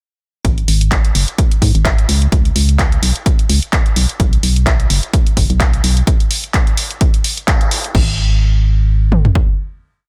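The mix is dry, dense and heavily limited, a loud modern master with the drum machine and bass pushed up front. This is a complete piano house piece, soulful and energetic, riding a four-on-the-floor pulse with a light swing on the sixteenths. A punchy analog drum machine drives it with a tape-warm kick and mid and floor toms. A layered electronic house kit sits lower, adding bright closed and open hats, a programmed handclap backbeat and a crash, with both kits in a small room. An organ-like FM bass plays a syncopated riff, its hollow, dark tone striking with a fast attack and decaying, while sidechain pumping gives it a rhythmic surge. The track is one long drop from 0.4 seconds, with a band accent at 7.5 seconds before the house kit stops and the bass and drum machine carry a final note.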